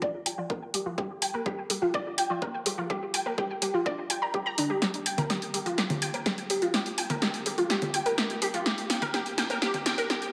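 Melancholic and dramatic, this melodic techno build-up cut from a longer piece sets a lush, detuned sawtooth unison pluck playing arpeggios through chorus, delay, sidechain pumping and a filter sweep over a punchy analog kick re-recorded in a small room and an overdriven, up-front techno kit of congas, hi-hat and snare that launches a drum fill at 4.8 seconds, all bathed in a dreamy plate reverb.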